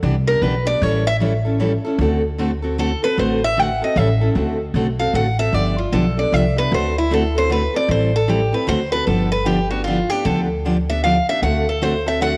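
Acoustic string swing in the jazz manouche style, playful and charming at 153 BPM in a swung 3/4 and D mixolydian, with a picked parlour guitar's boxy, fresh-stringed accompaniment and a woody, thumpy gut-string upright bass in pizzicato from the start, joined at 0.3 s by a picked dreadnought guitar carrying the melody as a solo over chords moving through Em7, A7, D7 and G7, all up front in light reverb in this short cut from a longer piece.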